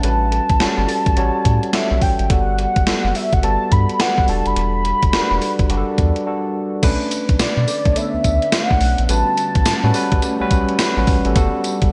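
Punchy and slick, this excerpt of new jack swing R&B rides a swung sixteenth groove, with an up-front 80s digital drum machine hitting a thumpy kick and gated-reverb snare alongside hi-hat, crash, tambourine and a very quiet, metallic cowbell. A velvety, detuned synth lead with chorus and vibrato carries the melody over a worn, slightly out-of-tune tine electric piano and a round, deep analog bass, moving through lush ninth, eleventh and thirteenth chords, with a short break at 6.3 seconds and an electric piano fill near the end. An ethereal, airy pad drifts in behind at 7.7 seconds, all set in a bright 1980s-style digital production with a lush hall reverb.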